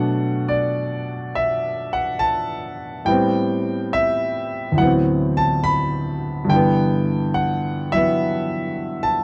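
Solo jazz on a warm concert grand piano with a deep bass and an up-front presence, swinging its eighths at a relaxed 70 BPM in G major through a playful passage from Bm7 to Am9, D13 and G6, captured dry and close in a small room with the character of a 1970s studio recording in this 9.2-second excerpt from a longer piece.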